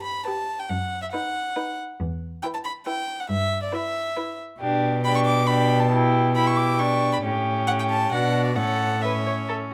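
A close, up-front first violin with an airy, nasal gut-string tone carries the melody over a darker, more distant second violin line and a rich viola accompaniment with light vibrato, joined at 0.7 seconds by a reedy, up-front cello bass in this cheerful, spirited period-style string quartet movement in E minor at a brisk 137 BPM in 3/4, caught in light reverb through close, detailed microphones as its harmony moves from E minor to an A major chord by the end of this excerpt.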